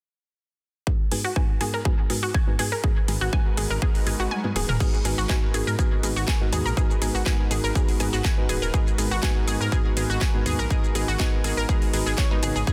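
Progressive house at 122 BPM in G# minor, this excerpt from a longer piece feels expansive and bittersweet, opening at 0.9 seconds on a G#m7 chord. An analog pluck spins detuned sawtooth arpeggios with chorus, cassette tape character, delay and sidechain pumping, while a deep mellow chord stab adds soft, nasal, full-bodied stabs with its own chorus, delay and pumping. An overdriven, punchy electronic kick sits up front, joined by a house drum kit with a cracking snare, metallic hats, shaker, crash and toms. A lush unison pad enters in the background with thick, sustained chords, and a dark detuned saw bass rumbles underneath with a beating low end. At 4.3 seconds the kick drops out for a drum fill, a very quiet electronic swell sounds at 4.4 seconds, and the kick returns at 4.8 seconds as a new section begins. Light digital reverb surrounds the parts, and the master is dense and heavily limited.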